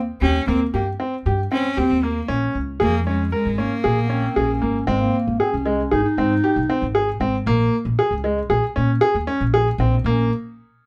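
Light reverb wraps a close, up-front recording of contemporary chamber music in an uneven 5/4 metre at 116 BPM, set in Bb dorian with a restless, hypnotic mood and a straight feel, cut from a longer piece. A brilliant grand piano spins arpeggios throughout, its action noise audible and its notes ringing with long sustain, while a woody, thumpy pizzicato upright bass on gut strings anchors the low end. A single clear, earthy cello carries the melody with light vibrato and an airy bow until 4.6 seconds, and a mellow, classical-style solo clarinet takes up a second line from 4.0 seconds as the chords move between Eb, Bbm7 and Ab.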